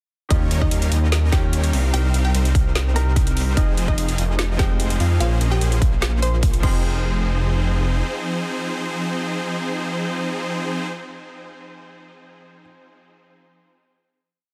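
Future bass with a bittersweet, dreamy half-time feel, built on a drop that gives way at 6.8 seconds to a final hit. An overdriven, punchy kick and a trap kit with a woody snare, metallic hats and hat rolls drive the beat, while a thick, chorused detuned saw bass follows the chord rhythm under huge supersaw chords that throb in tempo with sidechain pumping and dub echo. In the background a clear, worn grand piano holds spread chords with syncopated pushes, a wave-folded unison pluck repeats an octave riff melody through a filter sweep, and a very quiet, ringing concert harp enters at 3.6 seconds with an arpeggiated loop drifting against the bar.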